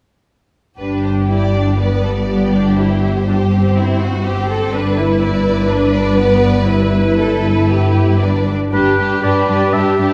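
Rubato-inflected 4/4 at 121 BPM with uneven beats drives this lively, cheerful classical-period orchestral fragment in G major, where a distant, smooth violin melody floats over an expressive, up-front second violin line, lush viola accompaniment, focused cellos and double basses holding low G beneath (the basses dropping out at 9.0 s), before a warm solo oboe steps forward at 8.7 s, all set back in a reverberant concert hall.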